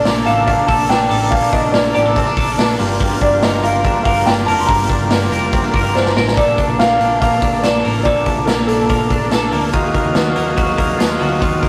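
Jangly indie pop with a nostalgic, youthful feel, this excerpt carries a woody upright piano melody with audible action noise over a buzzy combo organ with light vibrato, a bright, twangy twelve-string electric guitar playing arpeggios, and a dark, round picked hollow-body bass. The raw garage drum kit sits up front, gritty and saturated with a punchy kick and a pumping stone-room sound, and a drum fill at 6.0 seconds leads into a new section at 6.4 seconds. The piano drops out at 9.5 seconds while the band carries on, all captured as a rough rehearsal-room recording with tube saturation and a short, wet room reverb.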